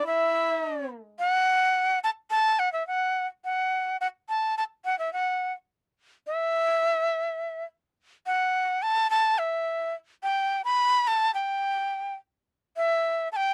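Andean folk with a melancholic, earthy mood, taken from a longer piece, in which a large wooden quena carries the melody, its breathy, reedy tone full of vibrato and tongued notes and placed up front. A dark, nasal violin adds a bowed second line with portamento and vibrato, but only for the opening 0.9 seconds, after which the quena continues to 13.5 seconds. The sound is dry and close, like a 1970s studio recording, with little reverb.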